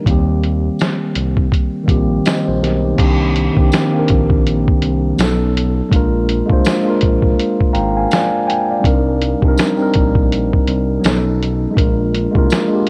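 A swung 16th-note groove in 4/4 at 82 BPM drives this cosy, mellow lo-fi hip hop excerpt, built on a compressed, pitched-down sampler-style drum kit with a thumpy kick, medium-tuned snare and crash cymbal, while a jingly, close tambourine sits in the background. Up front, a clean, low-pass-filtered tine electric piano moves through Cm9, B9 and Bb7 chords and plays a fill from 7.4 to 8.8 seconds, over a smooth synth bass of sawtooth and triangle tones shaded with ring modulation and vibrato. Light reverb and a worn, warbling cassette-tape pitch drift colour the whole recording.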